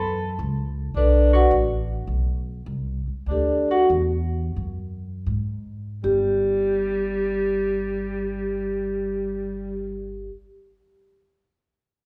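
Vibraphone played with soft mallets and the motor off carries the melody in a ringing, mellow voice, while a breathy tenor saxophone with vibrato adds a second line beneath it and a woody pizzicato upright bass sits up front. This relaxed, swinging jazz fragment, cut from a longer piece, moves in 4/4 at 76-108 BPM over a Bm7 that gives way to an open, chordless stretch at 3.3 seconds. The tempo slows between 0.9 and 6.0 seconds, and a recital-hall reverb lends the whole a church-like spaciousness.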